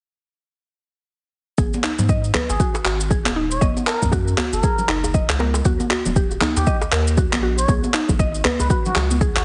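A swung sixteenth-note groove of overdriven, up-front deep electronic kick, overdriven shaker and handclaps, bright, damped congas and a tight, cracking djembe in the background drives this earthy, hypnotic afro house fragment, where a round analog bass and woody, mallet-like synth pluck arpeggios pump under sidechain, the pluck shimmering with chorus and digital delay, until a breathy, raspy cup-muted trumpet enters at 2.5 seconds with a jazz-style solo, all squeezed into a heavily compressed, radio-like sound.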